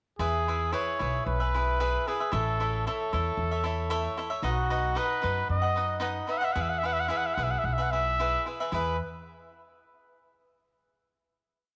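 This is a short mariachi piece in Mexican folk style, romantic and festive in mood, moving at 113 BPM in a straight 4/4 in E major. A trumpet carries the melody in a classical, solo manner, building motif-based period phrases between F#4 and F#5, its tone given a touch of slapback echo. A crisp, picked cavaquinho strums sixteenths in open chord shapes. Beneath them, a woody pizzicato upright bass plays a two-feel of roots and fifths. All three parts sit up front and play from 0.2 seconds, moving through E, A, B and back to E before a final chord rings from 8.7 seconds into a moderate plate reverb with a 3.4-second tail.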